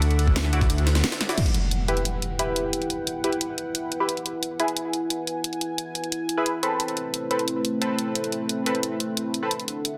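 A metallic, wobbling FM bass drives the opening of this cut from a longer dark technical drum and bass track, aggressive and saturated with tube grit and chorus, pumping under sidechain before it drops out at 1.0 s. A drop, a brief break and a band accent give way at 1.4 s to an up-front electronic impact, while a nasal, band-passed sawtooth chord stab with phaser and digital delay rides over an evolving, full-bodied resonant pad with a sub octave and its own sidechain pumping. Cracking layered electronic drums with crash and hi-hat drive the futuristic, mechanical feel, briefly joined by a knocking kick and a gritty, pitched-up jungle sampler kit set back in a large room, all under moderate plate reverb and a dense, heavily limited master.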